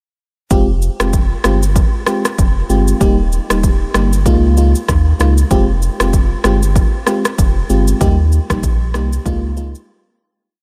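At 0.5 seconds a smooth, hypnotic afrobeats groove begins in F minor at 96 BPM, with the electric piano, sub bass and drum kit all entering together over a swung 4/4 feel. The electronic deep house kit sits up front, layered and punchy, with a kick, syncopated rim clicks and shaker captured in a small room. Beneath it, a round, sine-toned sub bass plays a bouncy, syncopated line with slides, deep and sustained. The mellow FM electric piano adds dark, soft, decaying syncopated chords with a faint noise layer and a chorus effect, cycling through Fmadd9, Eb and Db6. Light reverb lends the mix a subtle sense of space, and from 8.0 seconds the whole piece fades out before the drums stop at 9.9 seconds for a short closing break.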